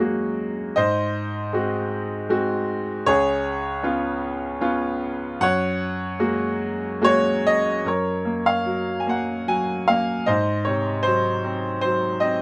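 Classical solo piano in a lyrical vein, this short passage cut from a longer piece moves at a gentle 77 BPM in 3/4 with a flexible, rubato feel. The mood is peaceful and tender, set in F# major and tuned slightly low to A4 = 439 Hz. A bright grand piano carries the whole 12.4 seconds alone, spanning C#2 to G#5 with a brilliant, smooth, vintage character, long sustain and an up-front presence. The harmony opens on F#add9 and passes through G#7 and C#7 before returning to F#add9, then a second section from 7.9 seconds settles on F# and moves again to G#7. A light reverb gives the instrument a soft sense of space around its clear, ringing tone.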